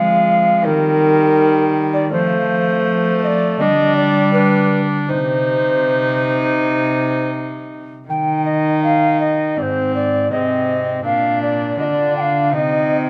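From the opening second, a hollow, chiffy alto recorder with vibrato carries the melody over ringing, fingerpicked concert harp, a reedy bowed viola and a rich, nasal gut-string cello in this rustic, courtly renaissance-style consort dance in C minor at 81 BPM, set in a moderate recital hall reverb as the excerpt moves into a new section at 8.1 seconds.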